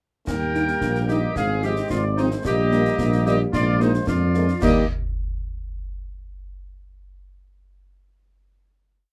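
Military-style march for wind band, spirited and festive, where a dark, distant trumpet section carries the melody, clear woodwinds double the tune in sixths, mellow French horns supply after-beat chords from the background, warm, soft-attack trombones hold sustained chords, an up-front mellow tuba plants the bass on the beats, and marching snare, dark-toned clash cymbals and bass drum drive the whole short piece to its final chord at 4.6 seconds.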